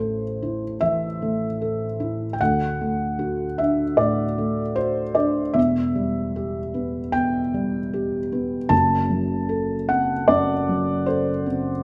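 A felt-muted upright piano plays alone and close up, its dark, soft tone thickened by heavy felt, with the mechanical noise of its action clearly audible. This intimate, melancholic fragment of neoclassical minimalist piano moves at a rubato 76 BPM in 4/4, tuned to A4 = 441 Hz, and spans E1 to A5 as it passes through Am, D, Em and F#dim. A moderate stone-room reverb surrounds the live performance across its 11.8 seconds.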